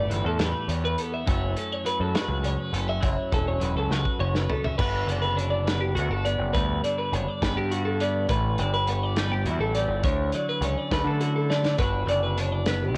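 A home recording on cassette, softened by a light small-room reverb, this playful, wistful stretch of math rock and midwest emo sways in 6/8 at 68 BPM in G lydian, tuned to A4 = 435 Hz, as it moves from A7sus2 and F#m7 into Gmaj7, A9sus4 and Dmaj9. Two clean, compressed twelve-string electric guitars chime throughout, one bright and twangy, up front and lower as accompaniment, the other warm with high arpeggios, while a growling, overdriven picked bass sits forward with a direct-and-amped bite. A loose indie kit with a punchy kick, medium-tuned snare and dark cymbals keeps a mid-forward presence, with a fill at 3.9 s leading into the second section at 4.8 s and another fill at 11.5 s.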